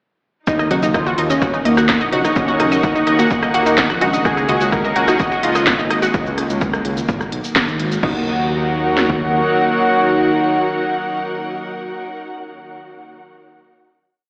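A fat, detuned sawtooth lead with a sub octave carries the repeating riff melody of this cinematic, dramatic melodic techno piece in Eb minor at 127 BPM, its mellow tone colored by phaser, vibrato and digital delay, and pumping against the kick. Beneath it, a layered electronic kit drives a four-on-the-floor pulse with a punchy kick, cracking snare, smooth programmed hats and backbeat, shaker, rim clicks and crash, all tape-tinged and re-recorded in a small room. A deep, rumbling detuned saw bass plays a dotted rhythm. A bright, warbling unison pluck runs a 3-step arpeggio loop that drifts against the bar through cassette grit and dub echo. A moody, wave-folded pad with chorus, an intimate sul tasto string section with light vibrato, sparse muted dub chord stabs with phaser and echo, and a very quiet, tense bowed-like drone entering at 2.6 s fill out the background. The drop begins at 0.5 s, moving from Ebm7 to Dbsus4 and back to a final Ebm7 chord at 8.0 s, all set in a huge ambient reverb with a big-room, AM-radio character.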